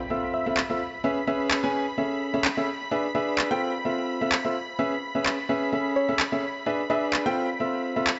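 A bright, brilliant baby grand piano leads this euphoric, uplifting piano house excerpt, playing an up-front riff between C4 and G#5 with long sustain and a touch of tape echo. At 128 BPM in 4/4 with a light 16th-note swing, electronic handclaps come in at 0.6 seconds, tape-warm and up front. Beneath them, a silky, detuned sawtooth string pad holds sustained chords on a slow attack and long release, shimmering with ensemble chorus and vibrato. A round, gentle FM synth lead with a keys-like struck attack sits in the background, surfacing briefly for short melodic phrases between C#5 and E5 and again from 6.0 seconds, dressed in chorus and tape echo. The harmony cycles through Fmaj7, C#m7, Amaj7 and E7, all bathed in a moderate plate reverb with a digital ambience and a softened top end.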